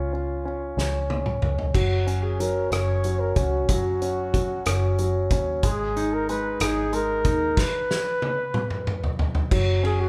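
This tender, heartfelt pop ballad moves in a slow, straight 6/8 at 62 BPM, counted in dotted quarters, in F# major, and is cut from a longer piece. A breathy, dark flugelhorn carries the melody from the start, close-miked with a jazz-style vibrato. Beneath it, a concert grand piano plays intimate accompaniment with long sustain and audible action noise, while a vintage foam-muted fingered electric bass adds a round, amped low end. A loose indie drum kit, with dark cymbals, a fat snare, a punchy kick, rim clicks and toms, enters at 0.8 seconds with a fill, and another fill arrives at 7.6 seconds. The harmony moves from C# to F#5 and then G#madd9 before returning to F#5 at 9.5 seconds. The band plays together in one room, and a moderate large studio reverb lends the performance a roomy, heartfelt glow.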